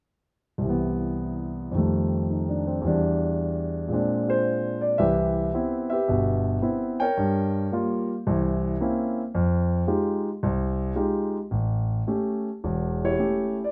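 A dark, mellow concert grand piano sits up front from 0.6 s in this relaxed, playful solo jazz passage in C major at 110 BPM, its swung, rubato phrasing reaching down to a deep bass as the harmony shifts through rich extended and altered chords from Cmaj7 to A7, all within a moderate club reverb until the cut at 13.7 s.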